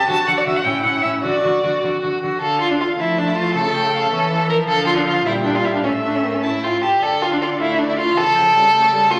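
Up front and smooth, a violin's second line carries this lively, spirited classical-period movement for string quartet in a straight 6/8, played with even vibrato. Above it, a more distant first violin sings the melody with expressive vibrato and portamento, while a dark viola fills in the accompaniment and a warm cello anchors the bass, both bowed with the same sliding, vibrato-rich expression. A recital hall's wet reverb and a layer of vinyl crackle surround this brief passage from a longer piece, which turns from bright major harmony to a minor-key stretch at 2.4 s and runs on to 9.2 s.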